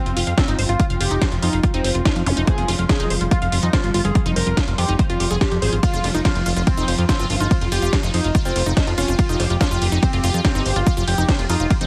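Squeezed into a heavily compressed, radio-like digital space, this driving, alien psychedelic trance excerpt runs at 143 BPM in 4/4 over an F5 chord. An overdriven kick sits up front beside a fat, detuned analog bass, while a techno kit adds a cracking snare, metallic hats and ride from a small room. Above them a gritty, screaming lead with vibrato, phaser and delay shares the space with a lush, punchy unison pluck under dub echo, a very quiet tempo-synced gated texture, an ethereal airy pad in the background, and a brief zap at 2.3 seconds.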